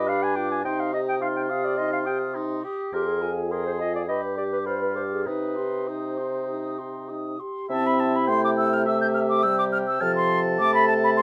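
A light reverb surrounds this graceful, cheerful classical-period wind quintet, cut from a longer piece: a quick, rubato 4/4 movement around 97-107 BPM that opens in C minor and brightens to C major at 7.7 s. An airy, distant flute carries the melody high above an oboe second line, with accompaniment from a mellow clarinet and a warm horn touched with light vibrato, while a dark, punchy, up-front bassoon anchors the bass.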